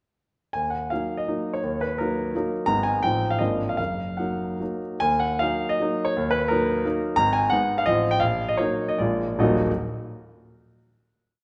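A smooth, vintage-toned grand piano sits up front and plays alone, carrying a single-line melody over bass and chords that stress the second or third beat of each bar. This brief romantic classical dance in 3/4 and Eb minor has a capricious, wistful mood, with dotted rhythms and a rubato feel that ranges from 136 to 188 BPM. The same phrase is stated twice, the second time slowing from 6.7 seconds before settling on a final Eb minor chord at 9.4 seconds, all heard in a moderate scoring-stage reverb.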